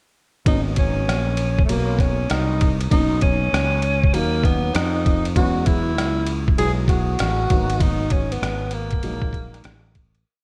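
Bathed in light reverb and digital ambience, this nocturnal, smoky jazz-hop piece sets a gritty, pitched-down sampler-style kit with a thumpy kick, hi-hat and rim click playing a boom-bap beat under a swung ride cymbal against a growly fretless electric bass walking with slides and chromatic approach notes, while a woody upright piano with analog chorus pushes rootless chords in the background and a breathy, whispered tenor saxophone soloing through tape echo spins a subtone, motif-based melody with scooped notes before everything fades out from 7.8 to 10.3 seconds.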